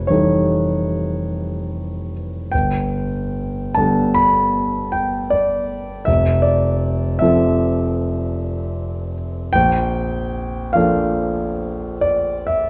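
Bathed in a dark, reverberant recital-hall sound, this serene, luminous fragment of impressionist classical music features a solo concert grand piano, intimate and up front with deep bass and audible action noise, drifting in 9/8 at a slow, rubato 43-54 BPM in F major, tuned to A4 = 435 Hz, through colourful harmonies from A7#11/F to Gadd9, Fmaj7 and finally Bbmaj7 at 9.5 seconds.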